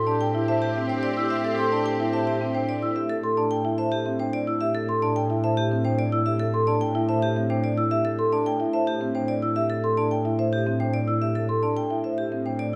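Hypnotic and urgent, this short cut from a longer piece of minimalist classical pattern music moves at 109 BPM in 3/4, opening on an A minor seventh chord. A metallic, ringing vibraphone carries the melody with medium motor vibrato over bell-like celesta arpeggios and mellow, round marimba patterns, while a lush, bowed double bass section holds the bass. A clear, smooth-topped string section and a soft-attacked clarinet in the background sound only until 2.9 seconds, all set in a wet recital hall reverb.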